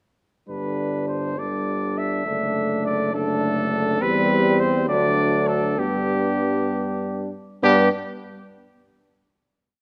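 In a straight 6/8 at 67 dotted-quarter beats per minute, this short, complete brass quintet piece in G major carries a noble, warm mood, with the vintage-toned trumpet up front singing the melody between G4 and E5 while the mellow, punchy flugelhorn and French horn move in chords that follow the rhythm of the tune. Further back, the trombone adds a light vibrato to its soft chordal support, and the clear tuba holds a sustained bass with passing notes, all five parts playing together from 0.5 to 7.9 seconds. The harmony travels from G through D/F#, C/E and D before settling on G for a final chord from 7.6 seconds, heard through close, detailed microphones on a scoring stage with a moderate 1.6-second reverb.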